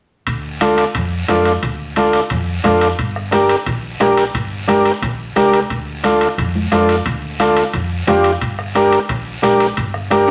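A brisk, straight four-beat cumbia groove drives this fiery, danceable fragment of a longer piece. The bass, bombo, guiro and timbales all come in at 0.3 seconds: a dark, round hollow-body electric bass sits low in the range, the soft-beater bombo stays close and dry in the background, the guiro rasps from a distant large room, and the metal-shell timbales ring out close and dry. At 0.6 seconds the high-tuned congas join with soft hands and a small-room ring, alongside a vintage combo organ that carries the accompaniment up front. The organ's reedy, overdriven tone carries a light vibrato as it plays in the middle register over a simple back-and-forth between D minor and G minor. A wet studio reverb wraps the mix, giving the dance-floor energy some space until the fragment cuts off at 10.3 seconds.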